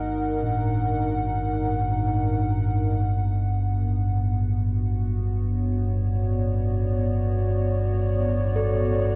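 A deep, rumbling drone sits up front in this dark, unsettling ambient piece at 49 BPM, alongside a moody, detuned analog pad of square and sawtooth waves with chorus that moves from Ebm to Bm at 3.0 seconds, while a very quiet, metallic bronze singing bowl with slow beating plays arpeggios from 0.4 seconds inside a wet cathedral reverb.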